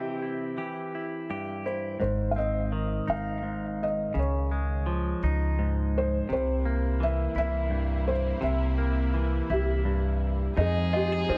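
Intimate and reflective, this short acoustic folk-pop ballad excerpt in a slow 6/8 at 56 BPM sets a mellow felt-muted upright piano melody with tape echo over a bright, twangy clean electric guitar, joined at 2.0 seconds by a woody, thumpy pizzicato upright bass up front, then by a dark, veiled con sordino string section at 6.3 seconds and a distant violin with vibrato and portamento at 10.6 seconds, all in light reverb as the chords move from C through Ab, Dbadd9 and C7 to Fm7.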